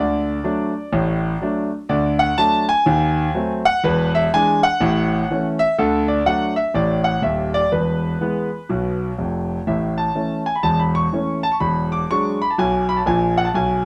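Playful and exuberant, this short excerpt of stride jazz features a single concert grand piano carrying the whole performance. The piano has a clear, open tone with a deep bass that extends down to D#1, and it sits up front in the sound. The swung eighth notes give the music a buoyant lilt as the harmony moves from D through a diminished passing chord and a dominant seventh before settling on A around 4.8 seconds. A new section begins at 9.7 seconds, returning to A and turning toward an E9 chord at 11.6 seconds. Close, detailed microphones capture the instrument, while a moderate club reverb adds a sense of a small, lively room.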